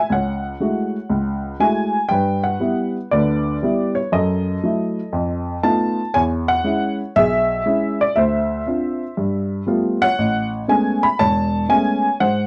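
Moody and swinging, this short solo jazz passage is cut from a longer piece and moves at 119 BPM in 4/4 with a 68% swing on the eighth notes. A lone upright piano carries everything, ranging from E1 up to B5, with a worn, woody, slightly detuned character that sits up front. Close, detailed microphones capture the instrument, wrapped in a light reverb. The harmony opens on F#m9, shifts to a new section at 2.1 s through G6, F#m7 and F7#11, then passes through E6, Dm7 and G9. The passage settles on Amaj9 at 10.2 s before it ends at 12.5 s.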